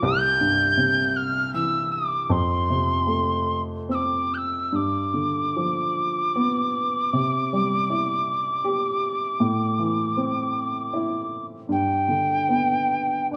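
Tender and nostalgic, this Celtic slow air in G mixolydian unfolds in a rubato 3/4 at roughly 70-81 BPM, tuned to A4 = 441 Hz. A wooden whistle carries the melody from G5 to G6 with a pure, mellow voice, a crisp attack with audible chiff, and expressive vibrato, sitting up front in the mix. An upright piano accompanies through the full 13.4 seconds, ranging from C2 to G4, its tone dark and woody with a natural, short sustain. The harmony moves through C, F, G7, C, Am and G. A moderate scoring-stage reverb with a 1.8-second decay gives the pair a sense of space, and the overall production is dusky and warm, fitting for this brief cut from a longer piece.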